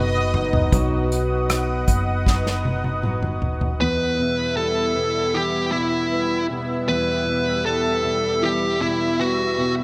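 A dreamy, reverb-soaked mix opens this heartbroken pop ballad excerpt in E minor at 78 BPM, where a brief bowed violin section with tape echo, deep-bassed concert grand piano, a lush detuned sawtooth pad, fingerpicked nylon-string guitar with audible finger squeak and a round, punchy hollow-body bass are joined at 0.3 seconds by an up-front small-room acoustic kit played with bundle sticks. The piano steps forward with a solo at 0.7 seconds as the others carry on beneath it, before a fuzz-distorted lead guitar takes the melody over the pad and piano from 3.8 seconds as the harmony settles from B onto Em.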